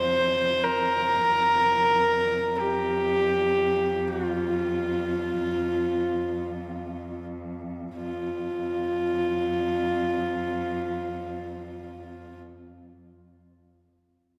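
Mongolian folk music with a galloping yet vast mood, this short cut from a longer piece sets a husky, airy-bowed horsehead fiddle up front carrying the portamento melody between F4 and C5, while a rich cello with vibrato holds a low F2 drone beneath it, the playing slowing from 1.3 to 8.0 seconds as a long church reverb opens the space around both bowed parts.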